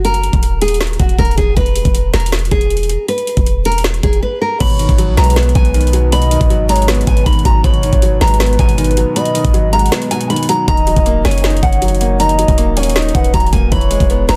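A half-time trap groove in 4/4, hard-hitting and eerie, puts a knocking kick, woody snare and metallic hats up front over a deep, boomy sine 808 while a fingerpicked nylon-string guitar with delay and audible finger squeak carries the melody throughout, and a brief break gives way at 4.6 seconds to a clear, worn grand piano and a smooth, gliding portamento lead with chorus and vibrato, the kick dropping out from 9.9 to 10.7 seconds in a dry, dense, heavily limited mix.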